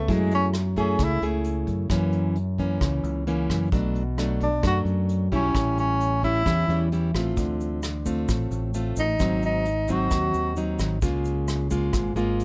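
A breathy, mellow tenor saxophone opens this relaxed, sunny bossa nova fragment over fingerpicked classical nylon-string guitar with fresh strings and a round, fingered electric bass. The distant, roomy sax, with light vibrato and scooped notes, pauses at 1.2 seconds and returns at 4.4 to carry its jazz-style solo. A vintage brush kit with a punchy kick, hi-hat and rim click adds a pumping small-room feel with a rolled-off top, a grainy, bright egg shaker joins in the background at 7.4 seconds, and the dry mix keeps the guitar up front.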